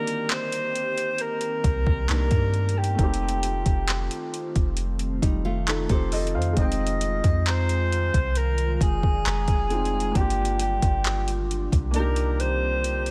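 A breathy alto saxophone carries the melody with light vibrato and tape echo, floating over a slow, late-night contemporary R&B groove at 67 BPM that moves through Cm7, F7, Fm7 and Gm7 with a feeling of longing. A soft, felt-muted upright piano and a glassy FM pad with ensemble chorus, reverb and sidechain pumping fill the harmony, while a very quiet crystalline wavetable pluck sparkles in brief moments. The produced drum kit of soft kick, metallic hi-hat and handclaps sits up front; a round, deep 808-style bass joins at 1.6 seconds, a fingerpicked nylon-string guitar arpeggio with tape echo appears at 5.2 seconds, and a drum fill closes the passage at 11.9 seconds, all within a small room ambience.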